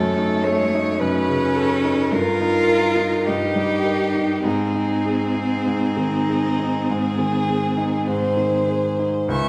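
From the first moment, a slow, melancholic romantic movement for piano quartet unfolds at around 48-55 BPM in a rubato 4/4, tuned to A4 = 437 Hz. The warm, close violin carries the yearning melody with vibrato, a soft attack and expressive portamento. Alongside it, a second violin with a rich, smooth and even tone and a focused cello with vibrato each shape their own second line. The baby grand piano sits up front as accompaniment, intimate and natural, with long sustain and audible action noise. Harmonies move from D#m7b5/F# to D#/G at 2.1 seconds and arrive on G# at 4.4 seconds. The ensemble plays throughout this 9.5-second fragment of a longer piece, bathed in the wet reverb of a recital hall or church with a 1.6-second decay.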